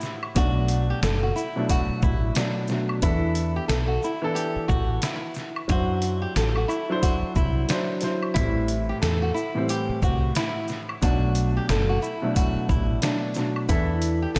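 Boom-bap hip-hop at 90 BPM in 4/4 with a swung sixteenth feel, this reflective, dark excerpt is cut from a longer piece and drifts through a dreamy mix soaked in a lush hall reverb. A sampler-style trip hop drum kit sits up front, compressed and pitched down with a gritty edge, pairing a thumpy kick and medium-tuned snare with hi-hat and shaker, re-recorded in a small room. A dark baby grand piano plays accompaniment from the start, mellow and intimate with audible action noise and short sustain, colored by cassette tape character and filtering. At 0.4 seconds a woody fretless electric bass enters, round, hollow-bodied and punchy, alongside a small, fingerpicked nylon-string guitar carrying the melody with finger squeak and a diffuse ambient delay. A tube shaker, woodblock and group handclap tick along in the background, while the harmony moves through Bm7, E7sus4, D7 and Am7 before returning to Bm7.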